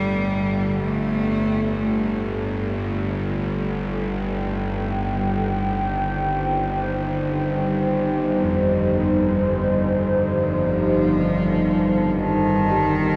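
Ominous and desolate, this dark ambient drone drifts in free time, tuned slightly low to A4 = 436 Hz, and is cut from a longer piece. A deep, moody analog pad sits up front for the whole stretch, its sawtooth and triangle layers with a sub octave rising slowly into sustained chords coloured by chorus and phaser. Beneath it, a tense, string-like drone holds a single low note, bright and up front, with detuned unison voices, a noise layer, vibrato and its own long, reverberant release. A single bowed cello sings a smooth, even melody with gentle vibrato, pausing after 2.5 seconds and returning at 10.3 seconds, its lines trailed by tape echo. From 8.4 seconds, metallic bronze gongs in the gamelan style fade in from the background, their round, beating, band-limited tones spinning out arpeggios through tape echo. The whole dreamy mix is soaked in a lush hall reverb that lets every sustained sound hang in the air.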